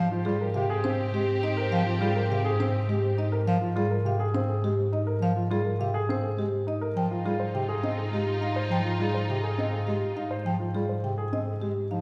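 A woody, round marimba played with soft mallets carries the melody in this hypnotic, bright minimalist pattern piece in Ab major, moving at 103 BPM in 3/4. A dark, intimate baby grand piano with audible action noise spins arpeggios, a present bass clarinet accompanies, and a close, bowed double bass holds Ab2 up front with smooth vibrato, while a lush, distant violin section lays sustained chords from the opening to 3.3 seconds and returns at 7.0 seconds. The harmony moves from Abmaj9 to Fm7/Ab at that same moment, and the ensemble sounds from further back in a wet scoring-stage reverb.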